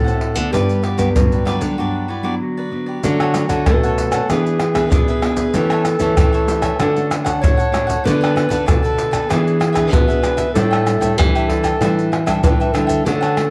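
A sunny, playful samba and choro moves at 96 BPM in a straight 4/4, opening in G major and shifting to D major at 3.0 seconds, after a brief break that begins at 1.8 seconds. A clarinet in classical style carries the second line through the middle register, its tone warm. Around it, a bright, crisp cavaquinho picks the accompaniment higher up, while a fingerpicked nylon-string guitar fills in chords with an audible finger squeak. A second, full-bodied nylon-string guitar holds the bass in its low register, and a percussion group of maracas, pandeiro, tamborim and a deep surdo sits up front with a vintage, band-limited character. The harmony leans on seventh chords such as Dmaj7, E7 and A7/E before settling on an A7sus4, all framed by light reverb and a dark production in this cut from a longer piece.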